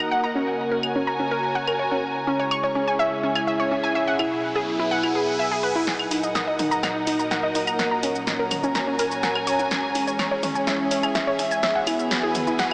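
Dramatic and driving, this cut from a longer melodic techno piece in Eb phrygian runs at 125 BPM in a straight 4/4, with an up-front house drum kit of punchy snare, bright hats, claves, shaker and toms, a round, detuned sawtooth analog pluck spinning arpeggios through chorus and tape echo, a warbling vintage pad whose sustained chords move under a filter sweep, and a veiled, muted string section bowing with vibrato, while a brief electronic riser from 3.8 s leads into a build-up and drum fill at 5.9 s over a Gb, Dbm, Eadd9 and Ebm progression, all bathed in huge ambient reverb for a dreamy, small-speaker sound.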